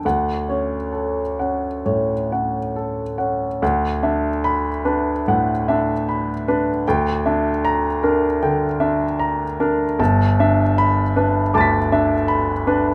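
Impressionist classical solo piano in D major, hazy and serene, drifts with rubato at 64-81 BPM as a clear, intimate grand piano, up front with audible action noise and long sustain, spans G1 to B6 through Dmaj7, D69, Gm6/D and G69 harmonies in light reverb, in a short excerpt cut from a longer piece.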